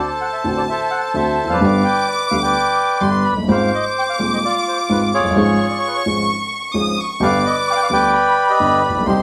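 A rubato 4/4 tango pulse at 129 BPM carries this tense, sultry fragment, where a reedy, dark bandoneon sings the melody up front, a chamber violin section adds a high, intimate second line with sul tasto bowing and light vibrato, and a smooth, vintage baby grand piano enters at 0.4 s with accompaniment ranging deep into the bass, all played live together in one room with a wet studio reverb over a progression moving from D7 through G, Ab6 and Db/Ab back to G.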